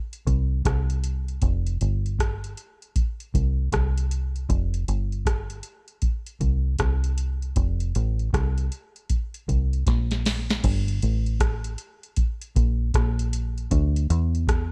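Sunny and warm, this roots reggae passage rolls along at 78 BPM in 4/4 with a swung sixteenth-note feel, taken from a longer piece. A soft vintage analog rhythm box sits up front with a deep kick, crisp snare, rim click, metallic hi-hats and crash, its sound carrying the character of a small room, while a dark, round, foam-muted fingered electric bass anchors the low end. The dry mix carries little reverb, and a drum fill at 9.9 seconds leads into a new section at 10.6 seconds.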